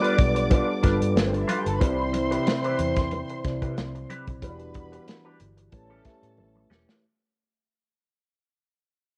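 Lush 1970s-style soul in A minor, this short fragment of a longer piece moves at 92 BPM in 4/4 with a light sixteenth-note swing, its mood smooth and silky as the chords pass from G7 through Cmaj7 and Em7 to A7. A mellow tine electric piano carries the accompaniment through its built-in speakers, while a distant, woody string section with vibrato adds a lush second line. An electric guitar through a small old amp plays a compressed, slightly broken-up picked riff with wah, and a close-miked trombone section adds punchy stabs from the background. The up-front soul drum kit, with its tight kick, medium-tuned snare and rolled-off top, anchors the groove and closes with a drum fill at 6.4 s, joined from 0.2 s by a dark, round, foam-muted fingered bass and very quiet, bright congas played with hard hands. The whole passage fades out under light studio reverb, and cassette tape colours the lo-fi home recording.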